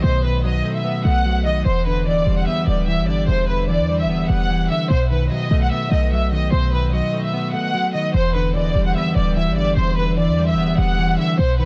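A half-time trap pulse at 148 BPM drives this brooding, melancholic hip hop excerpt in E minor, with a deep, boomy 808-style bass sounding clean sine tones that decay after each fast attack. A dark, hollow-body electric guitar plays fingered accompaniment up front through analog chorus and a low-pass filter, while a lush, bowed violin section carries the melody with expressive vibrato, its tone softened by a low-pass filter and trailed by tape echo. Harmony moves between B7 and Em7 in a small room, with a new section arriving at 8.1 seconds before the cut at 11.7 seconds.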